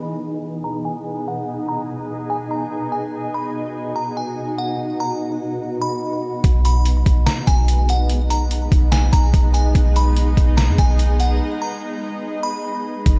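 A deep, boomy 808-style bass arrives up front at 6.4 seconds alongside a gritty, pitched-down sampler-style trip hop kit with a thumpy kick, grounding this blissful, dreamy half-time cloud-rap excerpt in B major at 145 BPM, where a shimmering, ethereal pad of detuned, chorused sustained chords pumps under a filter sweep and a tinkling FM tine bell carries the melody through delay, all in a reverb-soaked, church-like mix with lossy artefacts before a break at 11.4 seconds.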